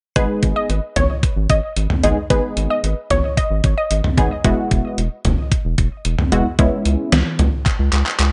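Synth-pop in G# minor at 112 BPM, this short cut from a longer piece carries a melancholic, cool mood over a straight 4/4 pulse, moving from G#m to Eadd9 and then C#m7. A detuned 8-bit digital drum machine sits up front with a thumpy kick, a medium-tuned snare, hi-hat, handclaps and toms, its sampler-style hits roughened by overdrive and gated reverb and re-recorded in a small room. Beneath it, a round analog bass blends square and sine tones into a deep, dark sustain with a fast attack. A funky polysynth comp fills the middle with a nasal, detuned sawtooth-and-pulse sound thickened by a sub octave and chorus, stopping at 7.2 seconds, while a lush unison pluck carries a second line with a noise layer, moving notch and tape echo until 3.9 seconds. A drum fill closes the passage from 7.7 to 8.3 seconds, all set in light reverb with a softened top end.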